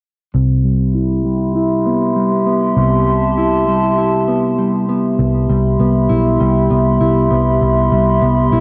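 A warbling, tape-like pad drifts in at 1.0 seconds with sustained, detuned chords, its slow attack and long release giving a nostalgic, lo-fi glow softened by chorus, built-in reverb and a low-pass filter. This short dream pop excerpt moves at 99 BPM in a straight 4/4, with a blissful, floating mood centered on a Cmaj7 chord and a tuning slightly below standard pitch at A4 = 436 Hz. From 0.3 seconds, a mellow, clean electric guitar plays fingered arpeggios, its dark tone shaped by subtle chorus, a low-pass filter and analog delay. Underneath, a vintage muted picked electric bass sits up front with a round, punchy, foam-muted sound in a low register. A filter sweep runs from 0.3 to 5.2 seconds before the music shifts into a new section, and the whole recording has a dry, gritty cassette character with little reverb in the room.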